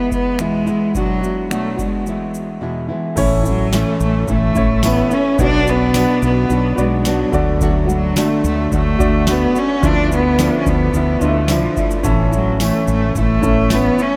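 Acoustic pop with a sunny, heartfelt mood, cut from a longer piece and bathed in a huge, dreamy reverb. A rich, bowed cello carries the melody with vibrato and a diffuse ambient delay, over fingerpicked nylon-string guitar with audible finger squeaks and a booming analog drum machine with a deep kick, tonal snare, snaps, shaker and crash. At 3.2 seconds a round, punchy fretless electric bass and a very quiet, polished baby grand piano join, followed at 3.7 seconds by a jingly tambourine in the background, as the chords settle around A, Bm and D.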